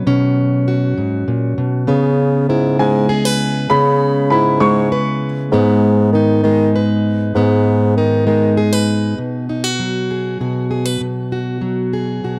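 A gentle 6/8 sway carries this wistful, reflective acoustic folk fragment, cut from a longer piece, with a full-bodied jumbo steel-string guitar fingerpicked up front throughout as it moves from Bsus2 through C#m7 and G#m before settling on B. A mellow bassoon enters at 1.9 s to carry the bass line in a close-miked classical style with light vibrato, and at 2.8 s an upright piano adds a brief, woody, boxy melody with long sustain and audible action noise. The sound is dry and close, like a 1970s studio session in a small room.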